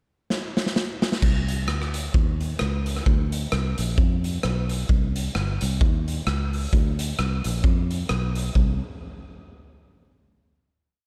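A swung ska beat at 131 BPM drives this short, mischievous piece, opening with a drum fill from 0.3 seconds before a fingered electric bass enters at 1.2 seconds and walks within a range of G1 to F2 with slides and chromatic approach notes. The raw garage drum kit sits up front with a punchy kick, a medium-tuned snare, side-stick backbeat, hi-hat and crash, its gritty, saturated sound carrying a pumping stone-room character and a rolled-off top. The bass is dark, round and foam-muted, heard direct and amped with little reverb, before a final note from 8.6 seconds closes the piece.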